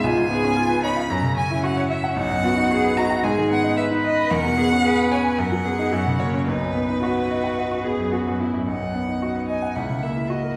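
From the first moment a bright grand piano accompaniment, a rich violin melody with light vibrato and a smooth bowed cello second line sound together in this quick, cheerful and graceful classical-period piano trio movement in B major at 112 BPM, heard from further back in a reverberant recital hall in a short passage cut from a longer piece.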